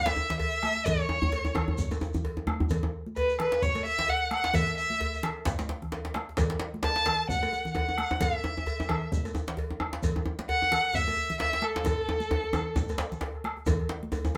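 A single bowed violin carries the melody up front, its rich tone shaded with vibrato and portamento, expressive yet set at a distance, moving between A4 and A5 until it stops at 13.2 seconds. Beneath it, a West African drum ensemble drives a powerful, earthy groove at 131 BPM in 4/4, with a swung sixteenth-note feel. One djembe sits up front, medium-tuned and struck with hard hands in a small room, while a second, tight and cracking with metal rattles, stays close and dry in the background. High-tuned congas with a thick skin add a warm, close punch, and a round, band-limited bombo gives the bottom a vintage colour. A metallic cowbell and a grainy, mellow shekere sit in a live room, and drum fills break in at 5.8 and 11.9 seconds of this short cut from a longer piece, all held in a moderate studio reverb.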